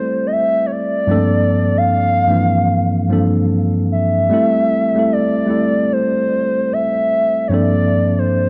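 A slow 75 BPM hip hop groove in 4/4 sways with a 64% swing on the sixteenths, setting a reflective, melancholic tone in G dorian, tuned slightly high to A4 = 441 Hz. A worn, slightly out-of-tune tine electric piano carries the accompaniment from 0.0 to 8.5 seconds, ranging from G2 to A4 and sitting clean and up front as it moves between Am7 and Gm11. Over it, a hollow, woody clarinet-like synth lead plays the melody between C5 and F5, its soft square-and-triangle tone edged with a noise layer, a fast attack, sustained notes, vibrato and a chorus effect. A moderate plate reverb with a 3.4-second tail surrounds the parts, and the production leans dark and warm overall. Cut from a longer piece, this single section lingers in its reflective, melancholic mood.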